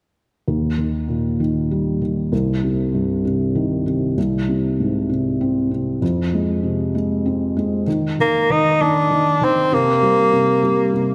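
Tender and romantic, this short pop fragment in Eb major sways at a slow 65 BPM in 6/8, opening at 0.5 s with a soft, mellow felt-muted upright piano whose dark, intimate tone and audible action noise sit up front as it moves through Eb, Cm, Ab/C and Fm before the harmony drops away, and at 8.2 s a clear, jazz-style solo tenor saxophone takes the melody up front with a soft attack, vibrato, scooped notes and a digital delay, all within a spacious concert hall reverb.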